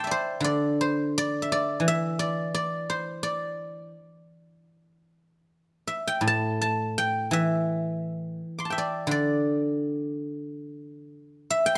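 A solo guzheng opens at once, its bright, silvery tone ringing out up front in a pastoral, elegant piece of Chinese traditional music in the D shang mode. Played with fingerpicks in free, rubato time hovering around 73-89 BPM, it ranges from A2 to D6 and moves into a second section at 6.2 seconds. Close, detailed microphones and light reverb frame this brief 11.8-second fragment cut from a longer piece.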